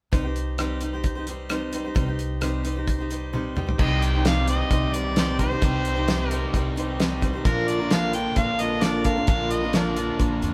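This is a live-sounding band recording with light reverb, the players sharing one room, cut from a longer folk rock and heartland rock piece. It moves at 131 BPM in a straight 4/4 in C minor, with a dusty, reflective mood, and its harmony shifts from C minor to B-flat later on. A bright, full-bodied jumbo acoustic guitar sits up front, picked on fresh strings with audible finger squeak. Beneath it are a woody, growly pizzicato upright bass and a dry, mid-forward 70s drum kit with a fat snare, tight kick, rim clicks, hi-hat, toms and crash. After a drum fill at 3.3 seconds, a harmonica and a double-tracked, overdriven electric guitar enter at 3.8 seconds. The vintage harmonica carries the melody with vibrato and scooped notes in a punchy pop style, while the biting electric guitar plays a riff beneath it.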